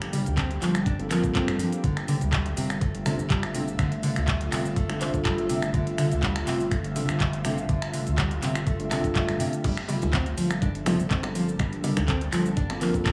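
A fingerpicked nylon-string guitar anchors this spiritual afro house excerpt, playing deep, classical-toned arpeggios through a dub echo that pumps with the sidechain. The groove runs at 123 BPM in 4/4 in G dorian, with a light 16th-note swing, and moves from Gm11 to Dm/G and back to Gm11 at 9.6 seconds. Underneath, a round, dark analog bass holds sustained low notes, while an afro-pop drum kit brings metallic hats, shaker, finger snaps, handclaps, toms and crash cymbal, joined at 0.4 seconds by a knocking electronic kick that sits in a large room. A mellow, clean tine electric piano adds chorused stabs with dub echo from 1.0 seconds, and an ethereal, airy pad glows above with detuned sawtooth shimmer, slow-attack chords, phaser and its own reverb. Tight, high-tuned bongos played with hard hands sit close and dry in the background near the end, and a light small-room ambience gives the whole mix a warm, intimate feel.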